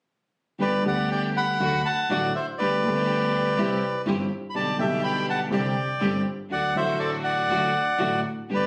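Passionate and nostalgic, this short tango cut from a longer piece moves at 122 BPM in G major with a rubato feel. From 0.6 s a reedy bandoneon carries the melody up front with a slapback echo, over a mellow, vintage baby grand piano with long sustain, while a distant, lush string section adds bowed stabs with vibrato and a woody upright bass plucks pizzicato in the background. The chords move from G through D and C to a closing D, all in light reverb, recorded on a phone in the room.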